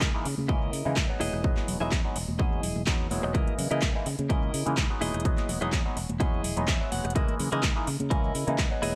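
Sensual and nostalgic, this filtered disco house excerpt swings gently over C#m69 and Emaj7 chords, with a punchy, tape-warm electronic kick up front, a house kit of metallic hats, handclaps and rim clicks, congas and maracas tucked in the background, a growly fingered bass, a mellow, stringy clav through a phaser with 12-bit sampler grit, and a twangy, compressed clean electric guitar riff that adds a short fill from 6.4 to 7.2 seconds, while sidechain pumping and low-pass filtering shape the clav, guitar and bass in a dry room.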